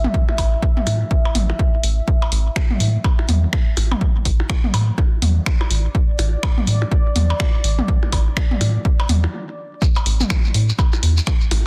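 A dense, heavily limited modern master with little reverb gives this cut from a longer minimal techno piece a dry, clinical, hypnotic feel, with a swung 4/4 groove. An up-front, punchy analog kick anchors the track, joined by an analog drum machine playing finger snaps and hi-hat, with soft clipping on its snare. A rubbery, hollow square-wave bass with tube saturation bounces below, its resonant filter pluck and moving notch sounding dark and pumping against the kick. Electronic toms and percussion blips, re-recorded in a large room, pass through a digital delay, while a deep, moody sawtooth pad with detuned unison, chorus and its own reverb sustains underneath with a sidechain pump. After a brief stop from 9.3 seconds, the drop arrives at 9.8 seconds, bringing in a grainy, mellow acoustic shekere played close.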